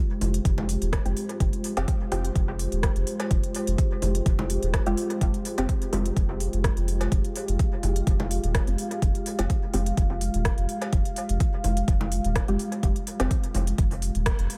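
A deep, round sub bass with a soft, pumping pulse sits up front in this nocturnal, meditative dub techno excerpt, joined by an up-front electronic kick, a dark detuned sawtooth pad holding an Fmadd9 chord with chorus, a muted, mellow filtered chord stab entering at 1.1 seconds with chorus, phaser and dub echo under a filter sweep, a deep house kit of smooth hats and rim clicks, and echoing bongos and cowbell in a small room, all in an echo-heavy mix with little reverb.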